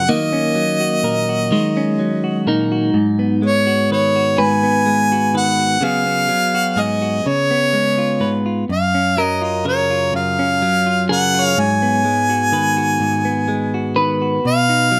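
A harmonica and a direct-recorded clean electric guitar open together on this nostalgic, hopeful acoustic folk-pop ballad in a slow, straight 6/8, cut from a longer piece. The harmonica carries the melody up front as a jazz-style solo, its clear, close-miked tone marked by light vibrato and scooped notes. Beneath it, the bright, twangy direct guitar picks a compressed accompaniment that also sits up front, ranging from low bass notes into the upper middle. A second clean electric guitar, softer and rounder, enters at 0.1 seconds with picked, compressed arpeggios shaded by tremolo. The chords move from D#m7 through G#m7, a C#7sus4 resolving to C#7, F#maj7, and G#m7 again before settling on B at 14.4 seconds, all set in a moderate studio reverb.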